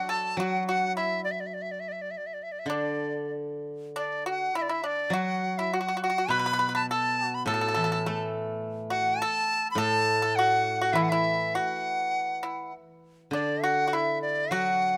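Rubato in 4/4 around 102 BPM, this graceful, pastoral Chinese chamber excerpt features a bright, reedy large dizi with a buzzing membrane and vibrato carrying the melody up front, a dry, percussive pipa playing the second line, and a silvery, ringing steel-string zither accompanying beneath, all captured with close, detailed microphones in a dry room.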